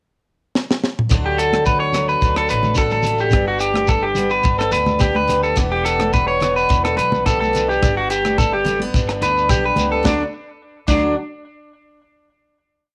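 A homespun cassette recording in a small room with moderate reverb carries this sunny highlife guitar band piece in a straight 4/4. A tight funk drum kit opens with a fill at 0.5 seconds, its dry, polished sound, high-tuned snare and tight kick sitting up front in a highlife groove. From 1.1 seconds a picked steel-string acoustic guitar adds syncopated fingerstyle accompaniment with bright fresh strings and audible finger squeak. Beneath it a woody pizzicato upright bass plays a dotted figure, and a grainy, band-limited shekere keeps a shaker pattern. Moments later an electric guitar at the edge of break-up steps forward with a twangy, picked arpeggio ostinato touched by tape echo, while damped, thick-skinned congas play a loose pattern with hard hands in the background. The joyful groove moves through D, G, Em7 and G before settling on a final D chord at 10.0 seconds.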